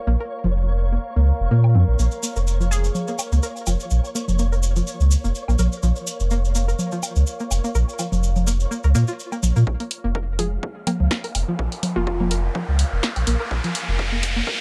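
Swung sixteenths in 4/4 drive this cool, hypnotic minimal techno excerpt, where a thick, saturated sub bass and a twangy, string-like resonator pluck with 12-bit sampler grit and tape echo pump beneath a moody ambient pad and a flickering grainy texture, overdriven congas and woodblock and a vintage cabasa add percussion, a crystalline wavetable pluck appears briefly, and a build-up from 9.7 s brings in a punchy analog drum machine's hi-hat and snare, a tape-warm electronic kick and, from 11.2 s, a riser.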